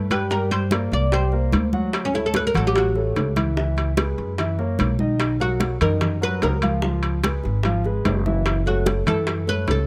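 Driving and sultry, this Afro-Cuban jazz passage is cut from a longer piece and features an oud solo throughout, its plectrum-plucked double strings sounding deep and woody up front, over a pizzicato upright bass with steel strings that sits equally forward. A concert grand piano with a rich low end supplies the accompaniment, while congas with thick, hard-hit skins and tight high-tuned bongos stay in the background, joined by ringing metal-shell timbales with a vintage, band-limited tone. The chords move through Gm, Dmaj7, F#7 and Bmaj7 before settling on F#m7 near 8.5 seconds, all captured in a dry, close 1970s-style studio sound.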